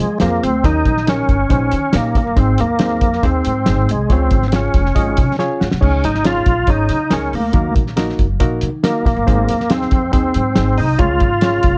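Passionate and driving, this uptempo 1960s-style soul excerpt sets a bright, key-clicking tonewheel organ melody with chorus vibrato and tape echo up front over a barky, lightly overdriven reed electric piano, a woody pizzicato upright bass and a cloth-damped, thuddy drum kit with a fat snare and dark cymbals, with the electric piano fill at 5.2 seconds joined by a drum fill at 5.4 seconds under light reverb in a dark production.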